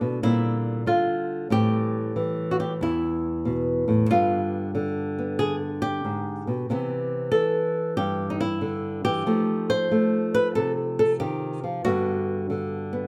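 A fingerpicked flamenco guitar sits up front in this playful, swinging solo jazz piece at 93 BPM in G major, its warm acoustic tone carrying audible finger squeak as it moves through chords such as Bb69, G7b9, Cmaj7 and F9 before settling on Gmaj7 at 11.8 seconds, all within a moderate, large studio reverb in this short cut from a longer piece.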